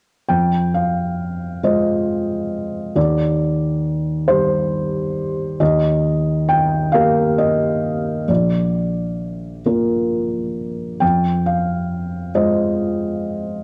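A slow, rubato 6/8 sways at 45 dotted-quarter beats per minute in this reflective, longing classical fragment in F dorian, cut from a longer piece. A felt-muted upright piano, dark and intimate with a thick-felt, vintage cassette tape character, plays accompaniment from 0.3 to 13.6 seconds across a range from Bb1 to G5, moving through Fm, Cmadd9/Eb, Eb and Bb before settling back on Fm. The piano sits up front in a home cassette recording with light reverb and a hint of studio ambience.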